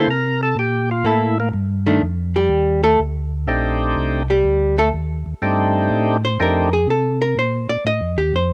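A thick, lightly overdriven tonewheel organ with key click and percussive attack leads this soulful, bluesy soul jazz organ trio excerpt over a dark, clean hollow-body archtop guitar, soloing until the guitar takes its own picked solo from 2.0 seconds, while the organ melody carries on until 6.7 seconds. Underneath, a mellow, round second organ holds the bass line with chorus vibrato, and both organs spin through slow rotary speakers, all three parts sitting up front. The swung 4/4 groove moves from C13 to F13 in a snug booth, captured on a home cassette whose tape colour tints the lead organ and guitar.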